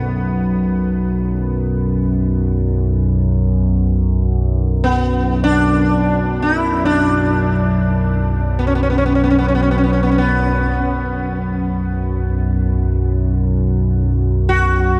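A buzzing, shimmering sitar carries the melody with plucked, up-front notes ringing with sympathetic strings and tape echo over a nasal, evolving analog drone whose sawtooth and pulse-wave tones bloom with slow attack and long release through chorus, making this 15-second excerpt of spacious, meditative world music in free time and B minor, set in a huge ambient reverb with a dark, warm production.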